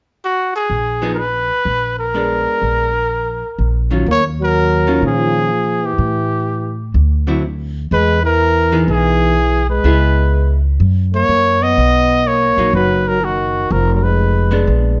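A swung 4/4 at 125 BPM, with 66% swing on the eighths, drives this cool, swinging small-group jazz excerpt in Eb minor, cut from a longer piece. A clear trumpet with light vibrato carries the melody up front from 0.2 s, set in plate reverb, while a woody pizzicato upright bass on steel strings holds the low end close to the listener. A dark, clean archtop guitar, picked on a hollow-body electric and miked through an amplifier, supplies the accompaniment from 1.0 s. At 4.1 s, as the music moves into its second section, a breathy, mellow trombone joins as a second line, scooping into notes with its own light vibrato. The harmony drifts through colorful changes such as Ebm9, D9, Emaj7 and a closing Fdim, and the overall sound sits in a light room ambience with a softened top end.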